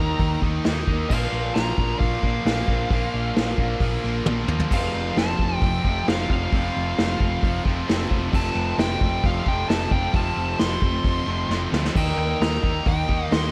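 A driving, heavy hard rock passage, cut from a longer piece, built on a stack of guitars over a round, hollow-body short-scale bass played with the fingers. A dark, smooth lead guitar carries the melody high above, its overdrive touched with slapback echo. Beneath it, a bright high-gain distorted guitar and a double-tracked heavy guitar pound out riffs, both with distortion and slapback, while an overdriven semi-hollow guitar adds another riff in the background through spring reverb. A vintage kit played with brushes sits roomy and punchy, with a medium-tuned snare and dark cymbals, and fills at 4.3 and 11.5 seconds push the repeated section forward. The harmony moves from Eb to Bb, then settles on F before returning to Eb at 12.0 seconds, all framed by a light studio reverb.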